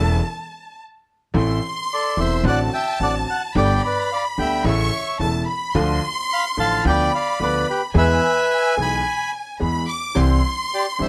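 Dramatic and passionate, this tango excerpt moves at a rubato 109 BPM in A minor, with a dark, lush violin section singing a bowed second line full of vibrato and portamento. A bright, brilliant upright piano sits up front in the accompaniment, while a woody, pizzicato upright bass anchors the low end. At 1.9 seconds a reedy, boxy bandoneon enters up front with the melody, all under light reverb.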